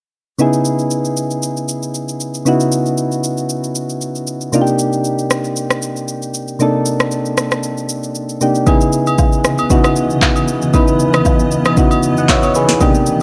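Amapiano in C# minor at 116 BPM, this short excerpt from a longer piece has a deep, soulful mood and a swung 16th-note feel in 4/4. Soft, round electric-piano-like synth keys carry the accompaniment up front, their mellow, warbling, vintage tone coloured by chorus as the harmony moves from C#m9 to Cm9 and back. An electronic afro-pop drum kit sits just as close, with a deep kick, sharp snare, rim click, handclaps and shaker giving a tape-warm, produced character. At 8.7 s, close and dry acoustic agogo bells and woodblock join quietly in the background, and at 9.1 s a cloudy granular pad enters with blurred, detuned, evolving sustained chords, softened by its own reverb and pumped by sidechain. Light reverb gives the whole mix a gentle sense of space.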